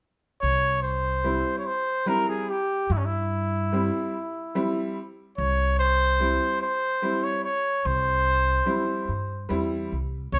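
A warm, vintage-toned trumpet and a dark, woody pizzicato upright bass begin together at 0.4 s, opening a bittersweet yet festive klezmer passage in an unhurried 3/4 at 73 BPM. The trumpet carries the melody up front in a classical style, ranging from Db4 to Db5, while the steel-strung bass anchors the low end between C2 and G2. At 1.2 s a clear upright piano joins with accompaniment in the middle register; its worn, slightly detuned character and short sustain give it an old-parlour feel. The three players sound like a band performing live together in a stone room, with a moderate reverb that lends the brief fragment an intimate, resonant space. Cut from a longer piece, this single section centres on a C chord and closes just past 10 seconds.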